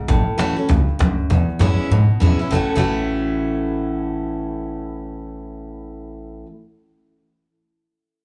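Rowdy and retro, this short rockabilly clip swings in a brisk four, sounding like a live club gig caught through the venue's PA with a light wash of room reverb. Up front, a bright, full-bodied dreadnought acoustic guitar is picked through the whole clip with audible finger squeak, its plate reverb adding sheen to the accompaniment. An upright bass plucked on steel strings gives a woody, thumpy low end under the guitar from start to finish. Sitting in the background, a snappy cajon struck with hard hands and rattling snares drives the groove, its kick and snare dropping out at 1.9 seconds before the cajon stops entirely at 2.8 seconds. The harmony moves among sixth chords on A and E, with guitar and bass carrying most of the second section on their own once the cajon stops.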